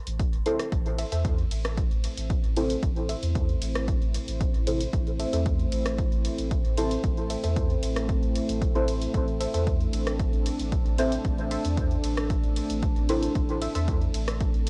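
A steady, straight 4/4 pulse at 114 BPM drives this deep, cavernous dub techno excerpt in A minor, with a punchy electronic kick up front, an analog drum machine supplying hi-hat, ride cymbal and rim click, and a round sine sub bass with tube saturation and sidechain pumping. A soft, decaying chord stab with phaser and dub echo enters at 0.5 seconds, a muted, detuned filtered stab with a filter sweep sits in the background from 1.0 seconds, and a moody, warbling sawtooth pad with slow attack and long release rises in at 1.7 seconds. The entire excerpt rests on a single A minor chord, carrying the vintage grain of a home cassette recording in a lightly reverberant room.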